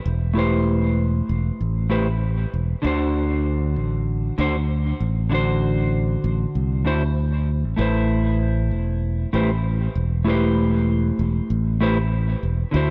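Smooth and relaxed, this sunset chillout excerpt pairs a bright, growly fingered electric bass up front with a dark, clean electric guitar in diffuse ambient delay, moving over lightly swung sixteenths from Am9 to D7 at 2.8 seconds and back to Am9 at 7.8 seconds inside a dreamy mix soaked in plate reverb.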